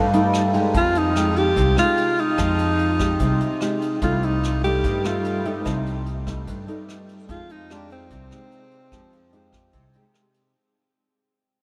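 Bossa nova at 147 BPM in 4/4, smooth and melancholic, moving between Cm6 and Fm9 in a dreamy mix soaked in a huge ambient reverb, and fading out across this short cut from a longer piece. A breathy, mellow alto saxophone with scooped notes and analog delay carries the up-front melody from 0.8 s, over a thumb-plucked nylon-string guitar with audible finger squeak and a woody pizzicato upright bass. A vintage brush kit with a punchy kick, rim clicks and a rolled-off top sits beneath them, while a ringing, metallic vibraphone note sounds briefly in the background at the opening.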